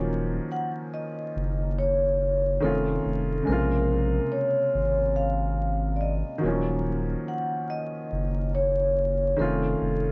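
A vibraphone played with soft mallets carries the ringing, metallic melody from 0.5 s, filtered and bathed in plate reverb with a slow motor vibrato, over a dark, woody upright piano softened by cassette tape and a deep, thick saturated sub bass, giving this reflective, melancholic hip hop fragment its swung sixteenths and vintage character amid vinyl crackle and modest studio ambience.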